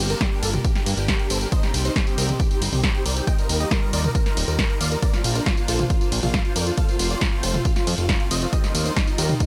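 Emotional and bittersweet, this uplifting trance passage is cut from a longer piece and moves at 137 BPM in a straight 4/4. A huge, euphoric supersaw lead carries the melody across a range of D4 to G5, its detuned unison sawtooth voices bright and compressed, with a moving notch, delay and sidechain pumping giving it a breathing pulse. Beneath it, a fat, thick analog bass built from detuned sawtooth tones sits up front with its own sidechain pumping, ranging from Eb1 to G2. A punchy analog drum machine enters at 0.1 seconds with hi-hat, ride cymbal, snare, tambourine and toms, and an up-front electronic kick joins at 0.2 seconds. The harmony moves through Gm, Cm, Ebadd9, Bbadd9 and F before returning to Ebadd9, all bathed in a digital ambience.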